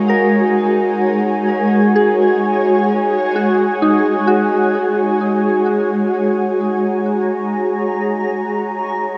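At a slow, straight 65 BPM in 4/4, this serene, reflective ambient fragment, cut from a longer piece, rests on a single G#7(no3) chord as an up-front, shimmering pad with an octave-up glow sustains chords through chorus and phaser, a soft, pure FM bell with a warbling, vintage tone spins arpeggios treated with delay, and a bright, string-like bowed drone sits in the background and fades out across the full 9.2 seconds, all bathed in a huge reverb within a dark, warm production.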